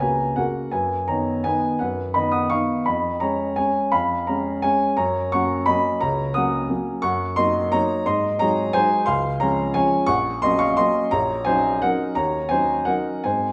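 A solo upright piano opens this elegant, graceful classical waltz in F# major, its woody, open tone placed up front with long sustain, tuned slightly low at A4 = 436 Hz. The 3/4 pulse flows with rubato between 153 and 185 BPM, and the harmony drifts from F# through chords such as G#m7/F#, Ab7 and Db before settling on Ebm7/Bb. A wet recital hall reverb surrounds the instrument, the highs are gently rolled off, and the 13.5-second passage is cut from a longer piece.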